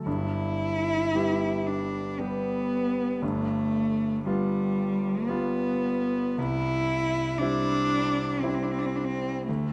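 A rich, expressive single cello sings the melody up front with vibrato and portamento over a clear, intimate concert grand piano accompaniment, whose deep bass, long sustain and audible action noise sit close beside it, in this tender fragment of a romantic classical duo in G major, moving through G, G7 and C at a rubato 58 BPM in 3/4, tuned to A4 = 439 Hz and set in a moderate stage reverb of 2.0 seconds.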